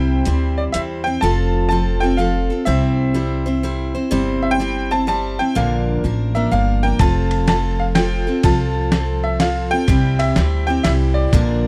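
A bright upright piano, a full-bodied picked steel-string acoustic guitar and a growly pizzicato upright bass open this sunny, heartfelt honky-tonk country waltz at 125 BPM with a swung 3/4 lilt in C mixolydian, as a gritty, compressed sampler-style soul drum kit with a thumpy kick snaps in briefly at 0.3 seconds for a break, before the brilliant, long-sustaining piano takes a solo from 1.2 seconds over the chords C, F and Bb, with the drums returning on hi-hat, snare and ride at 7.0 seconds in a dry, close 1970s-style studio sound touched with light reverb.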